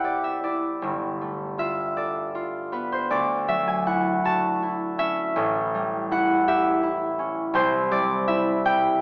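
A bright, ringing concert harp, thumb-plucked and up front, opens this dreamy, graceful classical solo, spanning G1 to A5 in a rubato 6/8 at about 53 BPM in dotted quarters, in C lydian tuned to A4 = 439 Hz. The harmony drifts from Cmaj9 through G9, Dmaj9 at 3.1 seconds and A7, settling on Cadd9 at 7.6 seconds. A wet recital hall reverb surrounds the acoustic harp, while the overall sound has a small-speaker quality in this brief cut from a longer piece.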